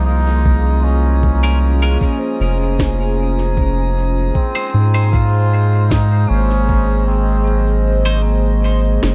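A nasal, straight-muted trombone melody floats over a warbling, detuned tape-like pad, ringing vibraphone arpeggios with tape echo, a round sub bass held up front and a faint glassy harmonics texture in this deep, hazy ambient dub fragment at 77 BPM in Bb minor, moving from Bbm7 to Ab, as an overdriven electronic cabasa and woody snare enter at 0.3 seconds, a muffled, thumpy pitched-down kick plays from 0.5 to 6.9 seconds, and twangy clean electric guitar stabs with 12-bit sampler grit and dub echo arrive at 1.4 seconds, all in a dry, close mix.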